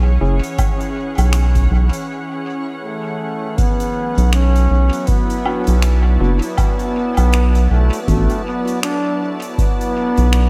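An echo-heavy mix with little reverb opens this meditative, deep ambient dub fragment at 80 BPM, swung on the 16ths in B dorian, where a round, dark analog bass sits up front beside a dry electronic kick, a calm organ-like pad warbles through ensemble chorus, a reversed, dreamy swelling texture drifts in the background until 2.1 s, a clean tine electric piano places stabs through dub echo, soft-mallet finger snaps, hi-hat and woodblock echo in a big room, and a smooth, classical-style solo trombone enters at 2.8 s as the harmony shifts from C#m to Bm at 3.6 s.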